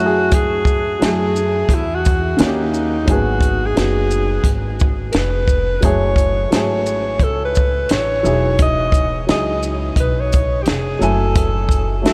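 Jazz-hop at 87 BPM in F# dorian, cool and smoky, with a swung 16th feel and a dreamy wash of long, huge reverb over this short cut from a longer piece. A breathy alto saxophone with subtone and light vibrato carries the melody up front, trailed by delay, over a dark, mellow upright piano moving through F#m9, G#m7 and Emaj9 and a woody, thumpy pizzicato upright bass. A compact cocktail drum kit enters at 0.3 seconds with punchy kick, high-tuned snare, hi-hat and shaker, its rolled-off top sitting up front.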